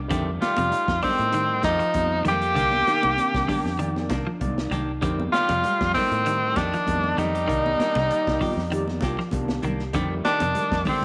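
This funky, driving afrobeat excerpt rides a lightly swung sixteenth-note groove in 4/4, built on a crunchy breakbeat kit of kick, snare and hi-hat that sounds saturated and gritty with a rolled-off top, joined at 0.6 seconds by thin-skinned, high-tuned congas sitting in the background. Underneath, a fingered electric bass plays round, punchy and dark from the very start, while the harmony moves between F9 and Cm9. A clear tenor saxophone takes the melody up front from 0.4 seconds, its vibrato giving it a vintage pop character, and a bright, close-miked alto saxophone sits below it in the background as a second line. A hollow, woody synth lead with a warbling chorus adds another soft, sustained second line until about 10.1 seconds. Filling out the backdrop are a slightly broken-up electric guitar picking arpeggios, a clean semi-hollow guitar playing stabs through spring reverb, and a barky, overdriven tine electric piano pulsing with medium tremolo through a combo amp. 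Light reverb and studio ambience frame the whole band.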